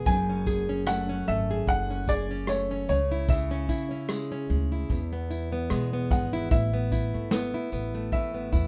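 Acoustic pop with a carefree, easy-going mood, moving at 74 BPM in 4/4 with a light sixteenth-note swing in A major, cut from a longer piece. A bright, full-bodied nylon-string guitar sits up front, fingerpicked in a classical manner with audible finger squeak, while a pizzicato upright bass on gut strings adds a thumpy, woody low end from the very start. Just after, at 0.1 seconds, a warm, woody upright piano carries the melody in a high register, joined by a soft brush kit with a punchy kick, medium-tuned snare, rim click and shaker, its dark, smooth tone rolled off at the top. A jingly tambourine sits far back in the mix with a live-room sound. The harmony moves from F#madd9 through C#m and E before settling on Asus2 as a new section begins at 6.5 seconds, all under a light reverb.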